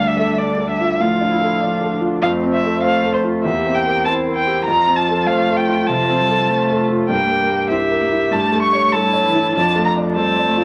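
A straight 4/4 pulse at 98 BPM drives this quick classical-period movement for piano quartet in D minor, a spirited, lively passage cut from a longer piece and tuned to A4 = 439 Hz. Up front, a single muted violin carries the melody between C5 and C#6, its con sordino tone dark and veiled, shaded with vibrato and portamento as it is bowed. Beneath it, a lone cello plays a second line from E3 to C4 with a smooth top, while the viola, soft in attack and set distant in the background, supplies accompaniment between C4 and G4. The concert grand piano, also up front, fills out the accompaniment from D2 to D5 with deep bass, an open character and long sustain. The harmony moves from Dm through F, C7/E, Edim/G and A7/G before settling on Dm/F near 9.5 seconds, all four parts sounding together throughout the roughly 10.6 seconds. A moderate large-studio reverb with a 1.0-second decay and a layer of vinyl crackle give the recording an aged, roomy surface.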